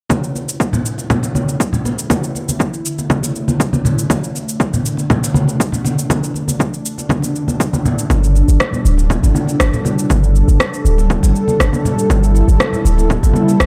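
A dark, warm production with light reverb carries this spiritual, driving afro house excerpt at 120 BPM in 4/4. A smooth, detuned sawtooth pad with chorus holds sustained chords from Dsus2, pumping against the beat under a filter sweep, while a punchy overdriven electronic kick and a layered, overdriven electronic cabasa and rim click, both re-recorded in a large room, sit beside low-tuned, thick-skinned congas played with soft hands. At 8.1 s the harmony moves to G5 as a deep, boomy 808-style sine bass with a noise layer enters up front, its fast attack decaying and pumping with the sidechain.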